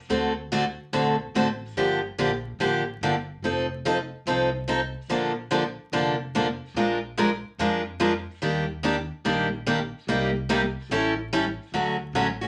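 A picked steel-string acoustic guitar and a pizzicato upright bass start together at 0.1 s, setting up a swinging, charming piece of acoustic string swing in the jazz manouche style at 144 BPM in 4/4 with a lilting swung eighth-note feel. The guitar carries the accompaniment up front in a bright concert tone, with finger squeak audible as it works through changes in Bb major such as D7, Gm7, Bbmaj7 and Ebmaj7, landing on Dmaj7 at 11.7 s. Beneath it, the upright bass sits much lower in the balance, its gut strings giving a woody, thumpy foundation in the low register. A wet studio ambience with a short half-second decay surrounds the pair, and a layer of vinyl crackle lends an old-record patina. The passage is cut from a longer performance, ending at 12.5 s.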